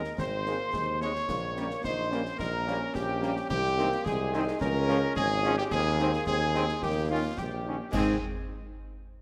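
A festive, proud military-style march for wind band in a straight 2/4, cut from a longer piece, with a warm cornet carrying the melody over a warm tuba bass that sits up front. A clear euphonium, a clear, roomy woodwind section and an airy flute section with crisp attack trace second lines in the background, while a mellow, very quiet French horn section and a bright trombone section holding sustained chords join at 0.5 seconds. Close, dry concert snare drum, concert bass drum and clash cymbals with bright cymbals round out the ensemble, all set in a moderate scoring stage reverb.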